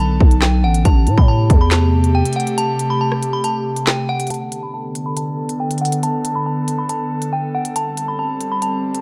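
A cold digital ambience surrounds this short cut from a longer drill track, ominous in mood and set in B phrygian at 139 BPM with a half-time feel in 4/4. An airy, breathy pad with a noise layer and a detuned edge sits up front, holding sustained chords that move from Bm7 to Am7, its slow attack and long release softened by chorus and a low-pass filter. Above it, a delicate FM tine bell tinkles out the melody in a high register, also shaded with chorus and filtering. A growling, buzzy 808-style bass opens the piece and stops at 2.2 seconds. The electronic drill kit brings a hard-clipped kick, woody snare, crisp hi-hats, handclaps and rim clicks. A break runs from 2.6 to 4.3 seconds before the second section returns to Bm7.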